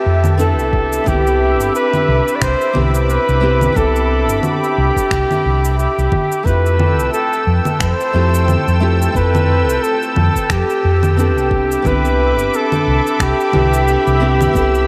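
Sunset chillout at 89 BPM in F lydian, blissful and relaxed, where an up-front flugelhorn with light vibrato and scooped notes sings a smooth jazz melody through analog delay over fingerpicked classical nylon-string guitar with tape echo, a thick, warbling sawtooth unison pad with chorus sustaining Fmaj9 and Cmaj9 chords, a round, dark hollow-body electric bass, and a soft, tape-warm electronic kick with electronic congas, cabasa and finger snaps, all soaked in a huge, dreamy reverb in this excerpt cut from a longer piece.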